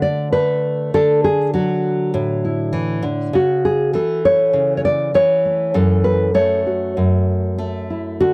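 A solo nylon-string guitar, warm and up front with fresh strings, thumb-plucked with a touch of finger squeak, plays a peaceful, hopeful folk fingerstyle passage at a rubato 100 BPM in 4/4, moving from Dadd9 to A/C# at 3.3 seconds and F#m7 at 5.7 seconds across a range from F#2 to D5, captured dry and close in a small room with a 1970s studio character in this brief excerpt cut from a longer piece.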